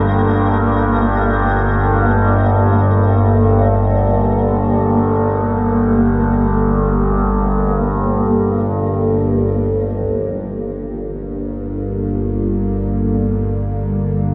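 Unsettling and ominous, this dark ambient drone drifts in free time, cut from a longer piece and bathed in a cavernous cathedral reverb that gives the whole production a dark, warm cast. Up front, an overtone-sweeping drone holds the low register, its wave-folded, resonant tone shifting with moving overtones and a moving notch, thickened by chorus. Above it, a deep, moody pad sustains a minor add-nine chord, its sawtooth and sine layers rounded by a sub octave and chorus into a mellow haze. In the background, a grainy, flickering granular texture shimmers on a single detuned note until it stops at 10.1 seconds. Just as it goes, at 10.0 seconds, a very quiet hit of solo taiko drums with heavy sticks sounds, compressed and saturated, before the drone and pad carry on alone to the end.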